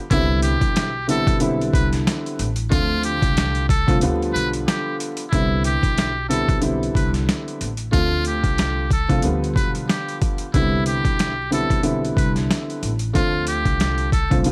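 Opening at 0.1 seconds with overdriven, pitched-down sampler drums and a thumpy kick, this dark, moody boom-bap hip-hop excerpt at 92 BPM with a light 16th-note swing sets a dusky, slightly detuned upright piano with audible action noise and cassette grit over a woody pizzicato upright bass, while a buzzy, breathy metal-muted trumpet carries a jazz-style solo melody through tape echo across a Cmaj9, Dm7, G7 progression, with a break arriving at 4.0 seconds, all framed by a dry, gritty sound and vinyl crackle.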